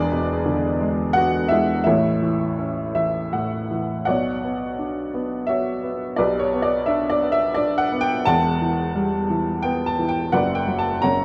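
An upright piano opens alone on an E7 chord, its tone woody, smooth and slightly detuned, with a vintage character and a place up front in the mix. This is lyrical classical solo piano in 3/4 at 86 BPM, played with rubato, and the mood is moody and bittersweet. A short piano fill at 2.6 s leads into the second passage, where the music settles into B minor at 4.1 s and moves through Bmadd9, G/B, Emadd9 and Bm/F#. The instrument spans E1 up to A#5 and is tuned to A4 = 443 Hz. A wet recital hall reverb surrounds the piano, and the dark production suits this brief cut from a longer piece.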